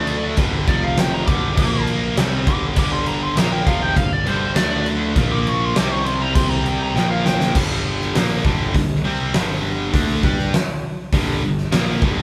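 Captured as a band playing live in one room with moderate studio reverb, this menacing, aggressive hard rock passage in G minor drives at 101 BPM in a straight 4/4, cycling through power chords such as G5, Bb5 and C5 before settling on Gm. A biting, overdriven lead guitar solo opens the excerpt and runs until 7.5 seconds, over a tight, double-tracked distorted guitar riff, growly fuzz electric bass and a big acoustic drum kit sitting up front with a punchy kick, fat snare and bright cymbals. A drum fill at 7.0 seconds ushers in a new section where riff guitar, bass and drums carry on through 12.2 seconds.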